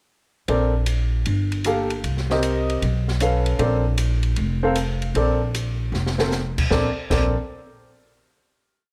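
An up-front upright piano with a woody, naturally ringing tone and long sustain drives this short, joyful big band swing piece in Bb major at 154 BPM, comping in syncopation with drop2 voicings over Bbmaj9, Gm9, Cm7 and Bsus2 changes. An upright bass, plucked on steel strings and also placed up front, plays a two-feel line, while a small-room acoustic kit plays a stick ride pattern with dark cymbals, a high-tuned snare and a boomy kick. A drum fill at 5.9 seconds leads into a final chord at 6.7 seconds, all within a light reverb.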